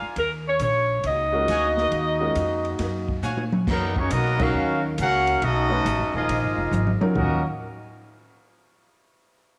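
Big band swing in Eb minor at 137 BPM, sultry and dramatic, with a tight, vintage-toned saxophone section carrying the melody over brilliant trumpet stabs, a woody pizzicato upright bass and a smooth drum kit with dark cymbals and a boomy kick. A warm trombone section adds a second line while an intimate grand piano, its action noise audible, supplies accompaniment. At 3.7 seconds a distant, roomy trumpet section takes over the melody with slapback echo, a band accent lands at 4.3 seconds, drum fills mark the phrase ends, and the whole cut from a longer piece sits in a small echo-chamber ambience.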